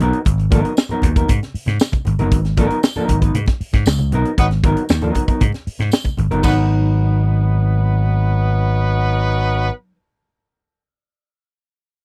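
Cool and funky, this short straight-feel funk cut in G# minor moves at 117 BPM, with a tight, up-front drum kit, a high-tuned snare, growly, punchy slap bass and a dark, clean hollow-body guitar sitting over G#m9, while very quiet congas and a jingly, saturated tambourine fill in behind. A distant, roomy horn section with light vibrato and octave doubling enters at 4.4 seconds as the band hits an accent, and the drums, congas and tambourine drop out around 6.7 seconds, shortly after the harmony moves to G#m7. The sound is dry and close, in the manner of a 1970s studio.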